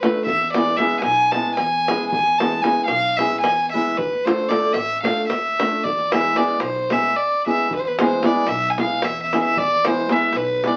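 In a brisk 7/8 at 226 BPM, this bittersweet, fiery Balkan wedding-band folk cut in E phrygian dominant puts a pure, floating bowed violin melody up front over dark, fingerpicked flamenco guitar on old strings, while a soft pizzicato upright bass and a deep davul in a small room sit beneath, all colored by studio reverb and the crackle of a very old 78 rpm record as the harmony moves from E to Dm and back to E.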